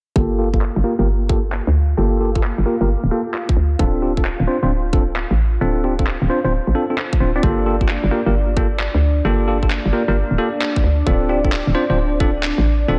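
UK garage in a two-step style at 132 BPM with swung 16ths in G minor, soulful and moody, where a hollow, bouncy FM bass with tube saturation and a tight, layered kick sit up front, electronic handclaps enter at 0.6 s, a bell-like tine electric piano plays bright stabs through a low-pass filter and analog delay over Gm9 and Dm7 chords, and a detuned sawtooth pad with chorus and sidechain pumping holds sustained chords in the background, the mix soaked in a dreamy hall reverb while filter sweeps run across the drums and electric piano.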